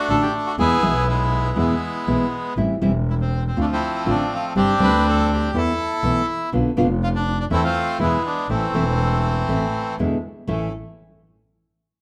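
A rubato 4/4 pulse at 122 BPM carries this tense, melancholic tango in A minor, where an up-front, reedy and airy bandoneon sings the melody over fingerpicked nylon-string guitar that sounds full-bodied and deeply classical, with audible finger squeak. Beneath them a single bowed double bass gives a clear, focused line with vibrato and a smooth top, all set in a moderate large-studio reverb caught by close, detailed microphones. The harmony winds through suspended and diminished chords toward an E7 that resolves to A as a new section begins at 10.5 seconds, cut from a longer piece.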